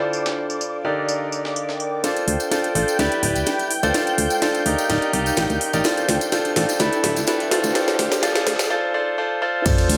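A bright concert grand piano leads this soulful, bittersweet piano house passage at 126 BPM, playing a brilliant, up-front riff through sidechain pumping, a low-pass filter and digital delay, moving between Dm7, Ebmaj7/D and Em7/D chords. Behind it, a silky analog string pad with ensemble chorus holds sustained chords, while a warbling, nostalgic tape-like pad, dark and lo-fi with its own chorus and built-in reverb, adds a sustained texture in the background. A gritty, pitched-up breakbeat sampler-style kit with hi-hat, snare and tambourine opens the piece until 1.9 seconds, then a house drum kit with a cracking snare, metallic hats and crash cymbal takes over at 2.0 seconds alongside a background tambourine, as a round, mellow FM bass enters at 2.3 seconds. A very quiet riser and sub drop enters at 4.1 seconds during the build-up, which runs through a drum fill and a short break before landing on an impact at 9.7 seconds where a punchy electronic kick hits. 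A moderate plate reverb gives the mix a digital ambience, and the passage is cut from a longer piece.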